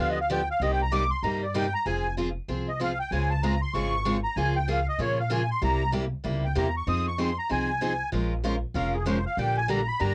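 Fiery and swinging, this 10.1-second excerpt of acoustic string swing in F minor races along at 192 BPM as a reedy, shimmering musette accordion with a cassette-tape tint solos up front over a warm picked steel-string acoustic guitar with audible finger squeak and a dark, thumpy pizzicato upright bass on gut strings colored by transformer saturation, all heard in a modest booth ambience on a home cassette recording.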